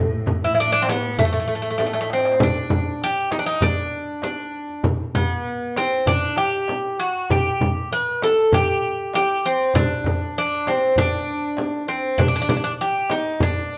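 A bright, metallic Greek bouzouki leads this hypnotic, melancholic Turkish makam ensemble piece, its picked double strings, some doubled at the octave, sitting up front as it carries the melody in D makam hicaz at 98 BPM in a straight 4/4. For the opening 2.5 seconds a rich, bowed cello holds a low drone in the background, its single player colouring the note with vibrato and portamento. Percussion joins at 0.3 seconds: a deep, clay-shelled darbuka with a natural skin sits back in the mix, compressed and saturated, while a small frame drum played with soft hands sounds close and dry. A drum fill from 1.8 to 2.4 seconds marks the move into the longer second section, where the bouzouki and the two drums carry on together. The band plays live in one room, wrapped in a wet, large studio reverb, and the recording is cut from a longer piece.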